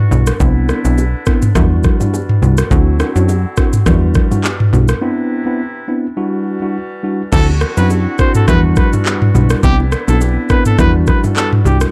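A punchy, plucky analog bass sits up front in this hypnotic, smooth afrobeats excerpt in E minor at 104 BPM, with a lightly swung 16th feel, riding a knocking electronic drum kit of kick, handclaps, rim click, shaker, toms and crash cymbal, plus very quiet, ringing bongos and congas. A worn, slightly out-of-tune tine electric piano and a warm vintage woodwind section hold Cmaj9, Em9 and D9 chords, with a break from 5.0 to 7.3 seconds. At 7.3 seconds a clear solo trumpet with vibrato and tape echo takes the melody, all within a dark, dry production.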